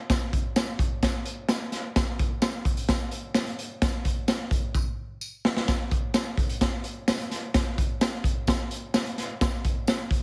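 A straight 4/4 soul groove at 129 BPM drives this short, passionate cut, carried by a raw garage drum kit of hi-hat, punchy kick and medium-tuned snare, sitting up front with a gritty, saturated sound in a small, pumping room. A jingly tambourine rides along in the background, close and dry, while the kit breaks into a drum fill from 4.8 to 5.7 seconds. Light reverb and heavy multiband compression give the whole piece a squeezed, radio-like character.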